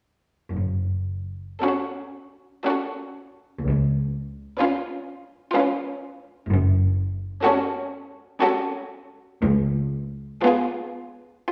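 Bowed cello and double bass sections open at 0.5 s, the cellos clear and the basses rich and expressive, laying a low vibrato foundation for a slow, melancholic romantic movement for string orchestra in F# minor, played at 54-64 BPM in a rubato 3/4. At 1.6 s the violins enter with a lush, warm melody, joined by a focused second violin line and smooth, even violas, all carried on vibrato over harmony that alternates between F#m and C#7. The elegiac fragment, cut from a longer piece, sits in the reverberant wash of a church or concert hall and closes at 11.3 s.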